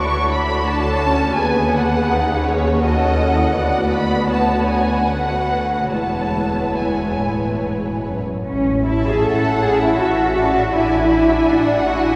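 A long cathedral reverb surrounds this tender, serene passage from a slow romantic movement for muted string orchestra, in A major and 3/4 at a rubato 69-86 BPM. Con sordino violins sing a veiled, lush melody over a second violin line, while dark-toned violas give soft-attack accompaniment, and a close cello section with light vibrato shares the bass with the double basses. The harmony moves through B minor and B7 colours to an E chord before arriving on A at 8.5 s.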